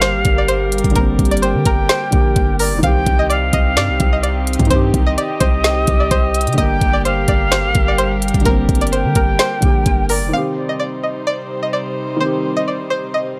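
A half-time trap groove drives this menacing, eerie hip hop fragment, with a knocking kick, woody snare and crisp hats sitting up front over a deep, boomy 808-style bass. A twangy, nasal resonator pluck with chorus carries the melody while a distant, airy jazz flute with vibrato and tape echo adds a second line, all set over a dark, intimate grand piano with audible action noise and floating, sul tasto chamber strings. Around 10.3 s the drums, bass and flute fall away, leaving the pluck, piano and strings, with the whole recording carrying a dry, gritty, saturated sound.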